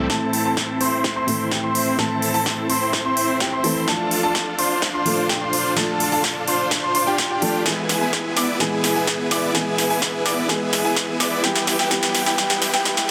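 A dense, heavily limited master and a huge ambient reverb wrap this excerpt of festival progressive house in a powerful, anthemic glow. Up front, a euphoric, detuned supersaw lead plays a bright, sustained riff with a fast attack, filtered and pumping against the sidechain with dub echo trailing behind it. Beneath it, a felt-muted upright piano adds soft, intimate, mellow accompaniment, while a concert grand piano spins high arpeggios with a boxy tone and long sustain; both also pump and echo. The whole passage is a build-up carried by a drum fill from a punchy, crisp big-room kit of snare and hi-hat that sits forward with a small-room character, and a layered electronic kick stays in the background. The harmony moves from Am to Dm, E and Em, and a very quiet electronic riser enters at 10.0 s.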